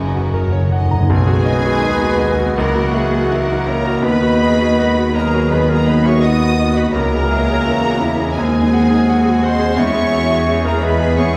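The pulse moves in unsteady, rubato beats, pulling and easing in a brooding, tragic romantic movement for piano and orchestra, heard here as a short cut from a longer piece. A timpani fill struck with soft mallets gives a round opening for the first 1.1 seconds, over a polished concert grand piano that carries the melody up front, intimate and present, its deep bass and audible action noise clearly caught. Bowed strings fill out the texture: the upper violins sing the melody with intense vibrato from a distance, a second, very quiet violin group hums a smooth inner part, violas add expressive portamento, and cellos and a focused double bass section lay down a lush low foundation. From 1.1 seconds the winds join with second lines, an airy, hollow flute and a close-miked oboe sitting in the background and a vintage-toned clarinet barely audible, while very quiet French horns and trombones hold sustained chords beneath. 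A wet scoring-stage reverb places the ensemble farther back in the room, giving the whole texture a spacious, mournful glow.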